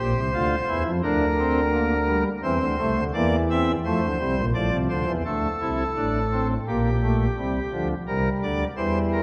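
A solemn, contemplative pipe organ sounds its nasal cornet solo stop with tremulant and a romantic voicing, placed up front, in this baroque-style three-part fugue cut from a longer piece, moving at 86 BPM in a straight 4/4 through F, G minor and C harmonies before shifting toward a C7 close at 8.1 seconds, all set in the lingering reverb of a concert hall.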